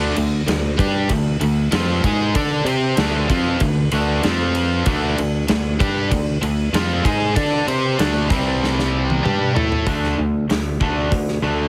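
Hard rock with a powerful, anthemic mood, this short straight-feel excerpt sets two cranked stack guitars and a double-tracked distorted electric guitar playing overdriven, picked riffs in the background, the last dropping out at 9.9 s, beneath an up-front, growly fingered bass and a big-room acoustic drum kit with bright cymbals and a punchy kick that enters at 0.2 s and rolls into a fill from 8.6 s, all under light reverb and a heavily compressed, radio-style sound.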